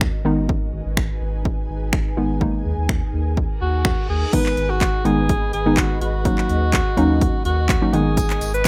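A clear, vintage-toned alto saxophone takes the lead at 3.6 s, singing an up-front pop-style solo melody over an energetic, driving dance-pop groove at 125 BPM in G# minor. Underneath, a hollow, bouncy square-wave pluck with a dark, detuned edge and a chorus effect carries the accompaniment, while a deep, full sub bass with an added octave anchors the low end, both pumping with sidechain compression. An ethereal, airy pad with a slow attack and long release holds mellow sustained chords, softened by ensemble chorus and its own reverb and also breathing with the sidechain. The punchy, tape-warm house drum kit sits up front with kick, hi-hat, handclaps, finger snaps, shaker and crash cymbal. A reverse cymbal sweeps in at 3.6 s, leading into the second half at 4.3 s, and a jingly, bright tambourine appears in the background at 8.2 s as the harmony moves from G#m through D#sus4 and D#m7 back to G#m. 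The dry, rough home-demo mix is cut from a longer piece.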